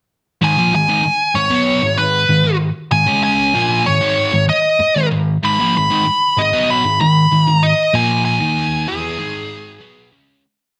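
A nasal lead guitar with a parked wah, overdriven and up front with a slapback echo, picks out a motif-based melody from G#4 to B5 over a dark, sludgy, double-tracked distorted guitar grinding out a power-chord riff on G# minor, in this driving, heavy rock piece at 96 BPM in 4/4, set in a wet studio reverb with a heavily compressed radio sound and fading out from 7.9 to 10.4 seconds.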